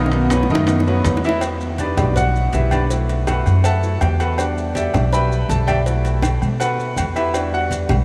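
Soaked in a huge, dreamy reverb over a small-room ambience, this fiery, danceable salsa excerpt opens with a drum fill and a brief burst of bright, tightly voiced background trombones trailing a diffuse delay until 1.2 seconds, then turns to a clear, up-front baby grand piano solo from 1.4 seconds, anchored by a woody, growly pizzicato upright bass, with soft-handed, low-tuned congas, high-tuned bongos and cowbell, ringing metal-shell timbales with agogo bells, and grainy maracas tucked close and dry beneath.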